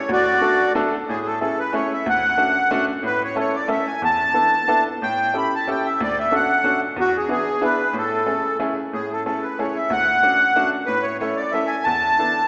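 A lilting, swung 3/4 groove at 184 BPM with a rubato feel carries this charming, whirling musette in A major, where a reedy, sweet accordion with light tremolo tuning sings the melody up front over a bright, woody upright piano with short sustain, all bathed in the lush reverb of a concert hall as the chords drift through Amaj7, Dmaj7 and E7sus4.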